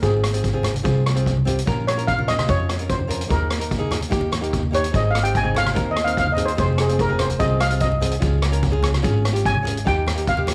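A shimmering, airy steel pan played with medium rubber sticks sits up front and solos throughout this carefree, sunny calypso excerpt, backed by a bright, small-sounding fingerpicked nylon-string guitar with audible finger squeak, a woody, thumpy pizzicato upright bass, a mid-forward street-band drum kit with a boomy kick, hi-hat and rim click and a rolled-off top, and low-tuned, thick-skinned congas that enter at 0.5 seconds in the background, all in a light reverb.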